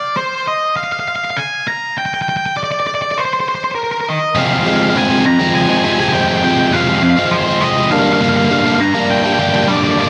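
This rock excerpt in F dorian moves at 101 BPM in a straight 3/4, with a brooding, cathartic mood. An octave-fuzz lead guitar carries the melody from the start, playing alone for the first 4.3 seconds in a range from Bb4 to Bb5. Its picked, distorted tone sits up front and is coloured by tape echo. At 4.3 seconds a biting overdriven guitar enters with a double-tracked riff spanning F2 to D4. This riff is louder than the lead, and its picked tone is warm and up front. The harmony moves from Fm at 4.4 seconds to Gm at 7.9 seconds, and a moderate recital-hall reverb with digital ambience surrounds the recording.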